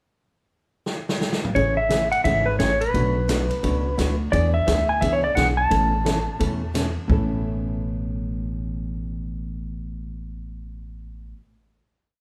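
Cheerful and down-home, this short, complete western swing piece in A major bounces along at 173 BPM with a swung feel on the eighth notes. A vintage drum kit opens with a fill at 0.9 seconds, then keeps a backbeat on a medium-tuned snare and punchy kick alongside a ride cymbal pattern. The upright bass, woody and thumpy with gut strings, sits up front playing a two-beat root-and-fifth line with walk-ups. Meanwhile a clean, compressed hollow-body jazz guitar keeps four-to-the-bar rhythm through changes from Amaj7 to Bm7, E7 and Aadd9. Also up front, a dark lap steel guitar carries a motif-based melody in period phrases, using slide and volume swells until about 6.7 seconds. The band sounds live in one large studio room with moderate reverb and lossy compression artefacts, as the final chord rings on until 11.4 seconds.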